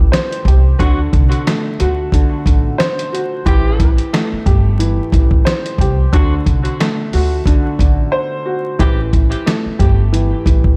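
Vinyl crackle and a small, dark room frame this tough, gritty boom-bap hip-hop excerpt at 90 BPM in A dorian, where an up-front, compressed sampler-style drum kit with a thumpy kick and medium-tuned snare sets a swung 16th-note groove over a growly pizzicato upright bass sitting in the background, a mellow, worn baby grand piano filtered through cassette tape with audible action noise, and a tight saxophone section with vibrato placing tape-echoed stabs from 0.8 to 9.0 seconds, with a brief break at 8.1 seconds before the Am7 and D7 harmony turns to A7(no3).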